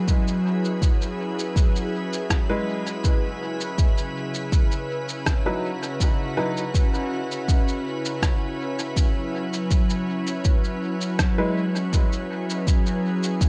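A deep, up-front electronic kick anchors this hazy, spacious ambient dub excerpt at 81 BPM, under a bright, pure organ-like sine pad with slow attack, chorus and reverb holding sustained chords from F#9sus4 to C#m11, a muffled, pitched-down cabasa and rim click carried on dub echo, and a woody, slightly detuned upright piano whose short stabs, also echoed, appear from 2.5 to 6.6 seconds and briefly again at 11.4 seconds.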